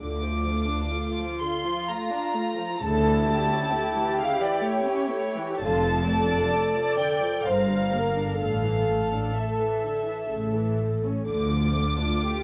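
A pure, floating violin section carries the melody up front in this slow, melancholic movement for string orchestra, a short passage cut from a longer piece in D minor at 64 BPM in 3/4, with uneven beats and rubato phrasing. Beneath it, a viola section with light vibrato and a soft, intimate attack supplies the accompaniment, while a chamber cello section and a woody, lush double bass section share the bass line, the basses sounding distant. At 1.0 s a dark second violin section with vibrato and a smooth top joins with its own line, bowed sul tasto like the rest of the ensemble. The yearning harmony moves from Dm through A/D, Dm/F and Gm to an Asus4 that settles on A before returning to Dm. Light reverb and worn, warbling cassette tape with drifting pitch leave the whole recording sounding faded and dulled in the highs.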